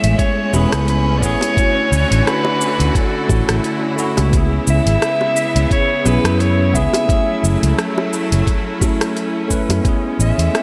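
Sunset chillout at 87 BPM in A major with a gentle swung sixteenth feel, smooth and blissful, moving through Amaj9, Dmaj9, C#m7 and F#m7 chords in a dreamy, lush hall-reverb mix. A mellow, distant soprano saxophone with vibrato carries the melody through a diffuse ambient delay, over a bell-like tine electric piano, bright bowed studio strings holding sustained chords, and a round, up-front fretless bass thickened by tube saturation. An electronic R&B kit with warm, tape-warm hi-hat, cabasa and rim click sits low beneath a gritty, thumpy electronic kick entering at 0.2 s, while very quiet, low-tuned bongos played with soft hands join at 0.5 s in this excerpt from a longer piece.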